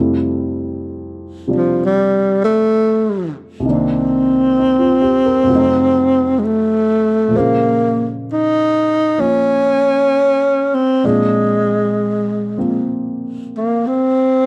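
Swung eighth notes at a slow 65 BPM in 4/4 set an unhurried, late-night pulse for this romantic jazz ballad, a passage cut from a longer piece and tuned slightly flat of standard pitch. A grand piano opens alone as accompaniment, its intimate tone carrying audible action noise and a short sustain while it moves through Fmaj9, Cm9, F7b9, Bbm9 and Bb9. At 1.6 seconds a breathy tenor saxophone enters with the melody, sitting up front and close-miked, with a soft attack, vibrato and a slapback echo that lends it a doubled edge. The saxophone plays as a jazz-style soloist over the piano until both parts end at 14.5 seconds. The small room ambience and the dry, close sound recall a 1970s studio, giving the performance a warm, confiding quality.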